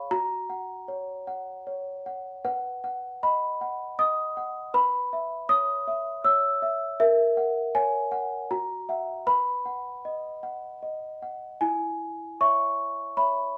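This classical lullaby for solo celesta moves at a gentle 78 BPM in 3/4 in B major, with a tender, innocent mood, in a brief fragment cut from a longer piece. The worn celesta sits up front with a bell-like, delicate tone from its soft felt hammers, slightly out of tune and spanning E4 to E6, in a boxy small room with moderate studio reverb. Its harmony drifts from F# through C#m7/B and F#7 home to B, then turns to a new passage on C#m/E at 11.6 s before the piece breaks off at 13.6 s.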